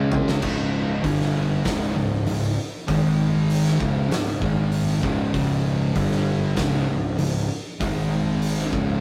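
A thick fuzz guitar sits up front with a dark, distorted riff ranging from C#2 to C#4, joined by a second fuzz guitar playing a riff mixed very quiet beneath it. This is a hypnotic, heavy stoner and doom metal excerpt at 98 BPM in a straight 4/4, cut from a longer piece and running about nine seconds. An oversized low-tuned drum kit opens with a brief fill before the main section arrives at 0.4 seconds, its fat snare, punchy kick, toms, hi-hat and crash cymbal sounding saturated and gritty in a bright stone room that pumps. A fuzz picked electric bass growls between C#1 and C#2, its overdriven tone bright and direct. The harmony circles around C#5 power chords, moving out to G5 and G#5 and back again. The whole piece carries the rough feel of a rehearsal-room recording, set in a moderate studio reverb.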